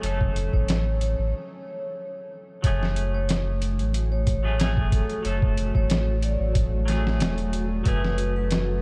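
Hypnotic and melancholic, this trip hop fragment from a longer piece rides a gritty, pitched-down sampler-style drum kit with a thumpy kick and a sub bass that is deep, round and tube-saturated, both up front, while dark sawtooth string-machine cellos hold chorused chords, a twangy clean electric guitar accompanies through tremolo and tape echo, and a metallic, airy vibraphone with hard mallets carries the melody in dub echo, a break arriving at 1.3 seconds before the harmony moves to an added-ninth minor chord at 2.6 seconds.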